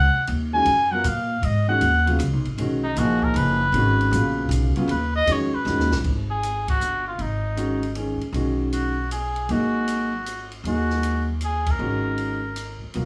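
A veiled, punchy cup-muted trumpet carries the melody of this hypnotic, intense modal jazz passage in G# dorian, swinging in 3/4 at 156 BPM and cut from a longer piece, with its solo running through 6.0 seconds. A woody, thumpy pizzicato upright bass and a clear concert grand piano with deep lows sit up front beneath it over a G#m9 harmony, while a natural-sounding jazz kit with dark cymbals and a boomy kick plays lower in the mix. A drum fill at 5.7 seconds leads into a second section marked by band accents, all set in a small room with moderate reverb.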